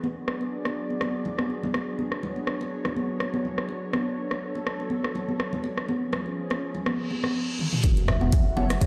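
Heard through a big sound system in a bare stone room, this short cut from a longer afro house track carries light digital ambience and lossy compression artefacts. It moves at 123 BPM in 4/4 with a gentle 16th-note swing, and its mood is spiritual and warm. A smooth, warbling analog pad sustains chorused chords that pump against the sidechain, moving through G#m7b5, Bm9 and C#7, while bright, high-tuned congas and a filtered, up-front deep house kit of hi-hat, rim click and toms keep the groove. A reverse cymbal and sub drop come in from 7.0 seconds, and after a drum fill the drop lands at 7.8 seconds on F#m7. Here a deep, rumbling detuned saw bass and a layered electronic kick push forward, and a woody kalimba plays arpeggios through dub echo. At 8.6 seconds, round, brassy synth stabs with vibrato and chorus join just before the cut.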